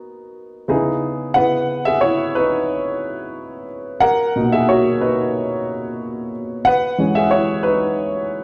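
A warm baby grand piano carries this short soul excerpt on its own, sounding natural and up front as it moves through a range from A#2 to F#5. The mood is silky and smooth, set at 90 BPM in 4/4 with a light swing on the sixteenths, in C# dorian and tuned to A4 = 442 Hz. The harmony drifts from Bmaj7 to C#m9, returns to Bmaj7 at 4.0 seconds, and settles on E6 at 6.7 seconds. The piano takes its solo from 1.4 seconds, where a new section begins and runs to the close at 8.4 seconds. The players perform live together in a stone room whose wet reverb lingers for about 1.4 seconds, and the clip is cut from a longer piece.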